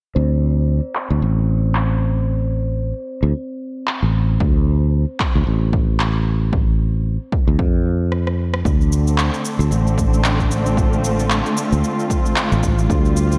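Organic downtempo in D minor at 113 BPM with a swung 16th-note feel, this hypnotic, mystical excerpt opens on a pure, close-miked quartz singing bowl with slow beating and a growly, bright fretless electric bass sitting up front, joined at 1.0 seconds by overdriven electronic handclaps, rim click and shaker. A punchy, overdriven electronic kick arrives at 4.4 seconds as the harmony moves from D5 to Dm7. After a drum fill, the bowl gives way to a veiled, con sordino string section entering at 8.6 seconds with light vibrato, soft attacks and sidechain pumping, all set in a small room with light reverb.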